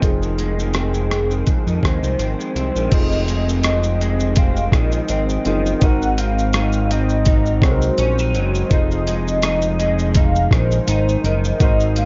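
Gritty, thumpy boom bap sampler-style drums sit up front in this nostalgic, hazy indie and bedroom-pop excerpt at 83 BPM with a light 16th-note swing, joined by a fat, sawtooth-edged analog bass, a dark, slightly broken-up electric guitar through a small old amp with analog chorus and vibrato, a woody, slightly detuned upright piano tucked in the background, and a velvety, detuned synth lead carrying the melody through lush chorus and tape echo over Fm7 and Ab7 chords, set in a dark production with light reverb.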